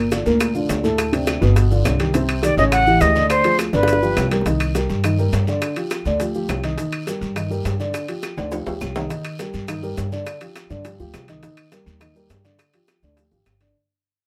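A breathy, bright concert flute with a straight, tongued tone takes a brief, slightly unsteady phrase up front from 2.4 to 4.3 seconds, over a fiery, sophisticated Afro-Cuban jazz groove in straight 4/4. A dark, boxy upright piano with short sustain and a thumpy, pizzicato upright bass with steel strings carry the chord changes, while ringing metal-shell timbales sit close and dry and tight, high-tuned bongos, woody claves, a raspy vintage guiro and grainy maracas stay in the background. Drum fills punctuate the passage, and after the flute drops out the music fades from 4.5 seconds under light reverb, as this excerpt is cut from a longer piece.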